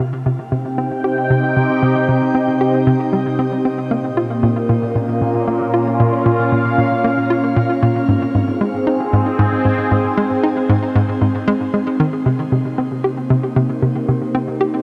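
A hollow, bouncy square-wave pluck with a noise layer sits up front, playing a short-decay riff through chorus and tape echo across this cut from a longer piece of ambient, sequencer-driven space music at 115 BPM in C phrygian. Alongside it, equally up front, a detuned sawtooth-and-sine pad with a resonant filter swell and slow attack holds sustained chords, moving from Cm through Bbm and Ab before settling on Cm7 as a new section arrives at 12.3 seconds. A shimmering reverb with a long tail opens the sound into something expansive and cosmic.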